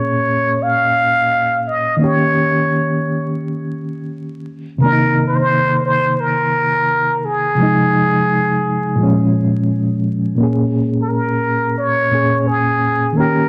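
A loping 4/4 hip hop groove at 86 BPM with a light 16th-note swing sets a hazy, melancholic mood in Bb dorian, moving through Bbm7, Eb7, Cm7 and Fm7/C across this short fragment from a longer piece. Up front, a plunger-muted trumpet carries a jazz-style solo melody with a raspy, growling wah-wah tone and a smooth top, while a reedy electric piano with fast tremolo provides accompaniment beneath, both softened by a low-pass filter and cassette tape. A lush hall reverb and vinyl crackle give the home-recorded sound its worn, dusty character, with a shift into a new section at 10.4 seconds.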